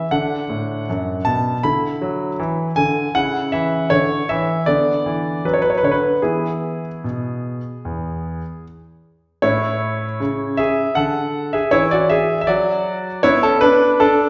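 Graceful and cheerful, this classical-period piano sonatina in A major moves at 78 BPM in 4/4 with an uneven, rubato feel, tuned slightly low with A4 at 437 Hz. A concert grand plays alone throughout, ranging from a deep bass up to the upper register, with a clear, polished and intimate tone, long sustain and audible action noise. The instrument sounds present and close, set within a wet recital hall reverb that gives a sense of hearing from further back in the room, and the passage is cut from a longer piece.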